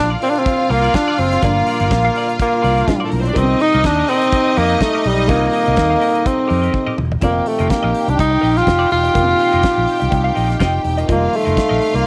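A sultry, danceable disco groove at 124 BPM opens with an up-front, breathy tenor saxophone carrying the melody in a subtone with scooped notes and light vibrato, over biting, bright bowed strings playing a second line, a very quiet, dark grand piano with short sustain, mellow French horns holding chords in the background, and a punchy, amped fingered electric bass. A compressed, clean electric guitar with wah picks accompaniment in the background, and a dry 70s drum kit with a fat snare and tight kick keeps a swung sixteenth-note feel across Gm7 and Cm7. A drum fill at 6.7 seconds leads into a new section on F7sus4 at 7.2 seconds, all set in light reverb and studio ambience.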